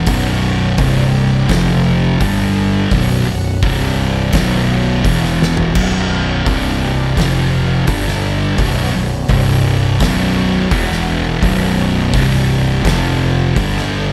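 A straight 4/4 pulse at 84 BPM drives this sludgy, hypnotic stoner and doom metal excerpt, its riff cycling through B5, C5, F5, G5 and E5 power chords over a big-room, oversized low-tuned drum kit with a boomy kick, fat snare, dark cymbals and a brief fill at 5.4 seconds. Two thick fuzz guitars carry the riff, one dark and up front, the other sitting behind it, while a round, punchy fingered electric bass with overdrive anchors the low end. A shimmering vintage string machine violin patch holds soft-attack sustained chords in the background, bright and thickened by ensemble chorus.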